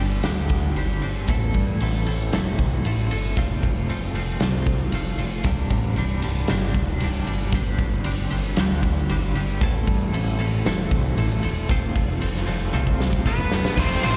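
A bright, twangy twelve-string electric guitar opens this anthemic, cathartic alternative rock excerpt, its clean, compressed arpeggios colored by tremolo and slapback echo, while a growling picked bass with overdrive sits up front beneath it. A huge arena drum kit arrives almost at once, with a punchy kick, medium-tuned snare, toms and bright crash and ride cymbals pumping in a hall-like room. The opening section circles through Gsus4, Am, F and Csus2 in a straight 4/4. A drum fill begins at 12.7 seconds, and a dark, nasal lead guitar with a parked wah and overdrive takes the melody at 13.3 seconds. At 13.8 seconds a bright overdriven electric guitar with slapback echo joins on a riff in the background, alongside a very quiet, thick fuzz guitar playing the riff too. The whole performance comes across like a live gig heard through the venue's PA, bathed in recital hall reverb.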